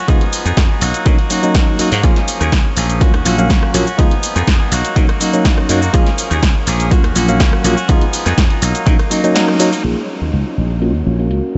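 Sensual and funky, this short cut of filtered disco house moves at 123 BPM in Eb minor, with a twangy, compressed clean electric guitar riff, a phaser-tinged tine electric piano through a combo amp, and a growly, foam-muted thumbed slap bass all pumping under sidechain and a low-pass filter, while an overdriven electronic kick sits up front until 9.0 seconds beside a punchy analog drum machine of hi-hat, rim click, shaker and snare, all cycling through Db9, Bmaj7, Bbm7 and rootless Ebm7 chords before a band accent at 9.4 seconds and a filter sweep from 9.8 seconds.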